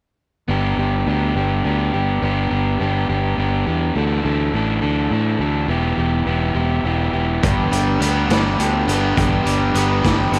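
A bright, crunchy guitar sits up front with a picked, overdriven riff in this wistful yet upbeat indie rock excerpt in 6/8, joined from the start by a warm fingered electric bass over a G, Dsus2, Em progression. At 7.4 seconds a second picked, overdriven guitar with subtle chorus enters lower in range, alongside a raw garage drum kit with a punchy kick, medium-tuned snare, hi-hat and a gritty, saturated, rolled-off tone. Light reverb lends the recording a small-room ambience.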